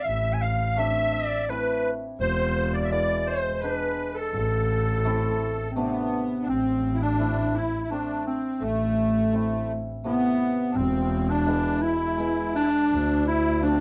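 Bittersweet yet festive, this klezmer fragment in 3/4 sets a mellow, smooth-topped clarinet melody up front over a reedy, shimmering musette accordion second line and a biting, bowed double bass with vibrato, while a ringing hammered dulcimer joins at 0.8 seconds, all within a dark production and moderate studio ambience.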